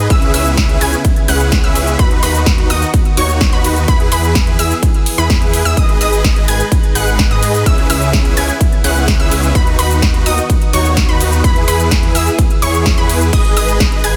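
Festival progressive house at 127 BPM in a straight 4/4, this powerful, anthemic passage is cut from a longer piece and cycles through C#m7, B/D#, E and G#m twice over its 14.2 seconds. A punchy, layered electronic kick sits up front, re-recorded in a small room, while a big-room dance kit adds a punchy snare, metallic hi-hats, ride, crash and shaker, both bathed in studio reverb. A detuned saw bass, thick and saturated with chorus, anchors the low end, and huge supersaw chords carry the riff with a bright, detuned sheen, analog chorus and delay. High above, a unison pluck spins decaying arpeggios with a noise layer, ring modulation and a filter sweep, its echoes trailing through delay. Behind it all, an airy, soft-attack pad holds sustained chords in the background, and the pad, pluck, supersaws and bass all pump with sidechain against a dense, heavily limited modern master.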